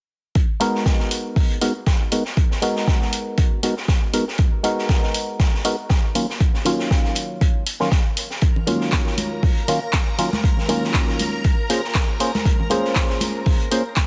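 A deep, up-front electronic kick anchors this smooth deep house excerpt at 119 BPM, with 55% swing on the sixteenths giving the 4/4 groove a gentle lilt. A hollow, percussive organ stab sits up front in the mix. Its mellow sine-and-triangle tone carries a noise layer and wave-folding, with chorus, phaser, dub echo and sidechain pumping, as it moves through G#m9, D#m9 and A#m9 in G# dorian. Layered electronic handclaps and hi-hats from a deep house kit blend with a gritty, saturated garage kit that brings a high-tuned snare, pumping high-passed hats, a rolled-off top and a small-room character. At 8.4 seconds a shimmering, bright string machine enters with soft-attack, sustained violins under ensemble chorus and sidechain pumping, and close, dry congas played with hard hands join at 8.6 seconds. Light reverb and studio ambience frame the track in a warm space.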